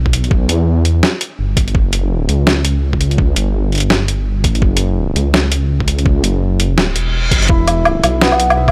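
A swung, half-time groove anchors this tense, heavy drum and bass excerpt: a gritty, pitched-down sampler-style kit with hi-hat, medium-tuned snare and woodblock sits up front beside a thumpy, compressed electronic kick. A deep, rumbling detuned saw bass, dark and beating, sustains under the Em and F#5 harmony in a digital ambience. An electronic reverse cymbal rises at 6.9 seconds into an E5 chord at 7.5 seconds, where a hammered, shimmering santur enters with ringing, delayed arpeggios.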